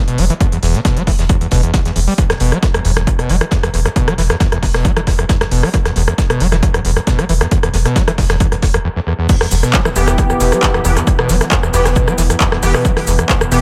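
Driving, dark peak-time techno at 135 BPM in E minor, this short cut from a longer track runs on a straight 4/4 pulse. A punchy, up-front electronic kick anchors the groove beneath a deep, thick saturated sine sub bass that pumps under sidechain, while a layered techno kit adds smooth hats, handclaps, rim clicks, shaker and crash with dub echo. Buried very quietly underneath sits a dry, damped 70s acoustic kit with a fat snare and rolled-off top. Dominating the front is a screaming acid riff, squelchy, resonant and aggressive, its sawtooth filter sweep pushed through distortion, chorus, cassette-tape grit and dub echo. After a brief break at 8.8 seconds, the drop lands at 9.3 seconds on an E minor chord. A mellow, evolving pulse-width drone swells in slowly in the background, and from 10.0 seconds an edgy, bright oscillator-sync polysynth fires nasal sweeping stabs, the whole mix lit by light reverb and heavy echo.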